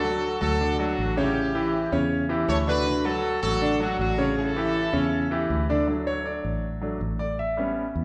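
A bright, punchy horn section leads this joyful, festive Latin excerpt at 159 BPM in D major, carrying the melody with a light vibrato and a tight, up-front, pop-style delivery. Beneath it, a clear concert grand piano supplies polished accompaniment with deep bass and short sustain, while a fingered electric bass adds a round, foam-muted low end that sounds direct and amped. The harmony alternates between D and A7 in a straight 4/4 feel. The horns drop out at 5.5 s, and from 5.9 s the present, up-front piano takes a solo over the bass. The whole band sits in the generous reverb of a recital hall, giving the bright ensemble a festive, open sense of space.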